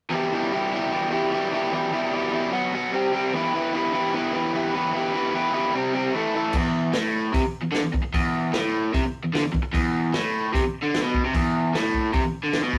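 Garage rock with a gritty, menacing edge, this short cut from a longer piece drives along at 150 BPM in a straight 4/4, centred on E minor. An overdriven electric guitar opens alone at 0.1 seconds, its picked, double-tracked riff sitting up front and ranging from low E2 up to B4, with a warm distortion. The riff moves through E minor, B5, C5 and A5 shapes before settling on E5 as a vintage drum kit enters at 6.5 seconds. The acoustic kit brings a punchy kick, a medium-tuned snare, hi-hat and crash cymbal, its natural studio-room tone warm with a rolled-off top and sitting a little behind the guitar. Moderate reverb and a rough rehearsal-room quality give the whole recording a raw, live character until it cuts off at 12.8 seconds.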